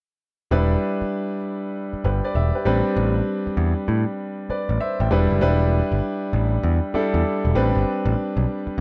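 Punchy and confident, this brief cut from a longer new jack swing R&B piece moves at 98 BPM in E minor with a 16th-note swing, as a clear, natural grand piano voices Em7 and Am11 chords up front over a bright, direct picked electric bass, both playing from 0.5 to 8.8 seconds within a dark, warm production touched by light reverb.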